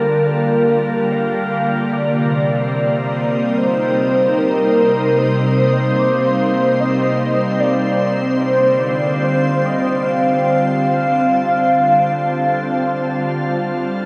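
Serene and spacious, this ambient passage drifts at 74 BPM in a straight 4/4, cut from a longer piece and tuned slightly low to A4 = 439 Hz. A velvety synth lead carries the melody between Bb4 and F5, fading in over the full 14.1 seconds with a mellow, detuned sawtooth-and-triangle tone, gentle vibrato, chorus and a diffuse ambient delay. Alongside it, a pure, organ-like additive pad holds sustained chords from C3 to A5, bright and up front with ensemble chorus and a moving notch. The harmony moves from Gm9 to Cm7 at 1.9 seconds and on to Dm7 at 8.4 seconds. A tense, string-like bowed drone sits on G3 in the background with vibrato and a noise layer, while a concert harp adds very quiet, ringing fingerpicked arpeggios from F4 to D6. The whole mix is bathed in a huge reverb with an 8.4-second decay, and carries the soft grain of cassette tape and a small room's ambience.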